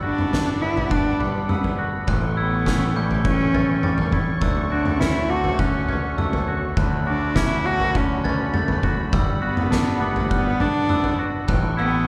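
A bowed solo cello leads this euphoric, hopeful post-rock excerpt in D major, singing the melody with a light vibrato and a nasal, boxy tone over veiled, muted strings held far in the background. Around them, a twangy clean electric guitar picks arpeggios through spring reverb, while a glockenspiel struck with soft plastic mallets rings bell-like arpeggios high above. A growling overdriven bass anchors the low end, and from 0.2 seconds an oversized, low-tuned acoustic drum kit sits up front with a punchy kick, a fat snare, toms and a gritty, saturated edge. The tempo is a straight 102 BPM in 4/4, and the harmony moves from Gmaj7 to A7 to a long Dmaj7 before returning to Gmaj7 and A7. A moderate church reverb surrounds the ensemble, giving it a spacious, resonant hall sound.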